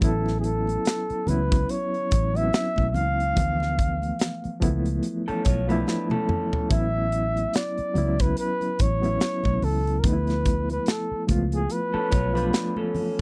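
A gently swung 72 BPM groove in 4/4 underpins this smooth, lush 1970s-style soul excerpt in A major, where a breathy, whispered flugelhorn with scooped notes carries the melody up front over a barky reed electric piano with fast tremolo and light overdrive, a dark, foam-muted fingered bass, a modern drum kit with a punchy kick and a high-tuned snare that plays a fill at 5.9 seconds, very quiet high-tuned congas, and a slightly broken-up electric guitar riff with spring reverb entering at 5.3 and 11.9 seconds, set in a dry, close studio sound.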